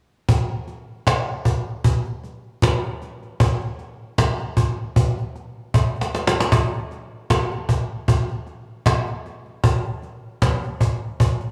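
A gently swung 77 BPM reggae groove in 4/4, carried by a single snappy acoustic cajon with its snares up front in a live room, sets a smooth, romantic mood in this short cut from a longer piece, with a drum fill at 5.7 seconds leading into the second section and a moderate plate reverb adding a soft tail.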